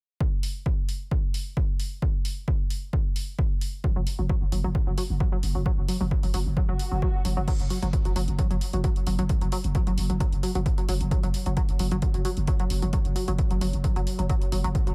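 Set in a digital ambience, this dark, relentless slice of driving peak-time techno opens on a dry, punchy electronic kick up front, layered with an overdriven drum kit of crash cymbal and hi-hat. Near 3.8 seconds a tight, nasal sequenced synth riff arrives with chorus, tube saturation, dub echo and sidechain pumping, joined almost at once by a growling, buzzy 808-style bass under a low-pass filter and the same pumping. A brief electronic swell in the background leads into the second half, where a deep, moody ambient pad of detuned unison voices enters at 8.7 seconds, carrying chorus and built-in reverb.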